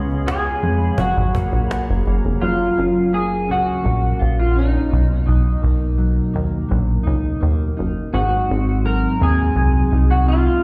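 A live-sounding mix with light recital-hall reverb carries this dreamy, sunny indie and bedroom pop excerpt in F# major at 84 BPM, where a twangy, slightly broken-up picked guitar takes the melody up front over a dark, fingered guitar bathed in lush chorus and warbly drift, a punchy, plucky analog bass, a woody cajon and a blurred granular pad that both drop away by 2.4 seconds, as the chords move from F#maj7 to Bmaj7 to G#7.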